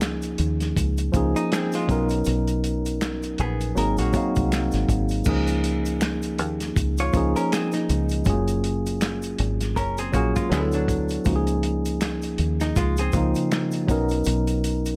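A worn, slightly out-of-tune tine electric piano sits up front in this relaxed, sensual neo-soul R&B excerpt, laying down lush chords in Db major at a swung 80 BPM alongside a round, punchy fingered bass with a foam-muted thump. A muffled, lo-fi soul drum kit with dark cymbals and a tight kick keeps the groove, while finger snaps, a tube shaker and group handclaps sit close and dry in the background. A dark, compressed hollow-body jazz guitar adds a picked second line from 1.4 to 13.9 seconds, all within an intimate small-room ambience.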